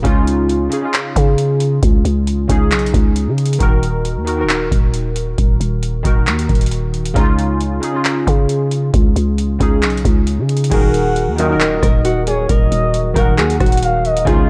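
Hard-hitting and menacing, this half-time trap cut from a longer hip hop piece is driven by a booming analog drum machine with a deep kick, metallic hats, handclaps, rim clicks and crash, sitting up front beside a growling, buzzy 808-style bass. Glassy, detuned digital keys with chorus and a low-pass filter carry the accompaniment throughout, moving between Dbadd9 and Eb minor chords. At 10.7 seconds the arrangement thickens as a fingerpicked nylon-string guitar takes the melody in a classical style, with audible finger squeak and tape echo. A smooth, gliding portamento lead traces a second line above it, colored by chorus, phaser, vibrato and echo, while a warm brass ensemble adds stabs in the background. From 12.2 seconds a very quiet, deep and moody ambient pad sustains chords underneath, all set in a digital ambience.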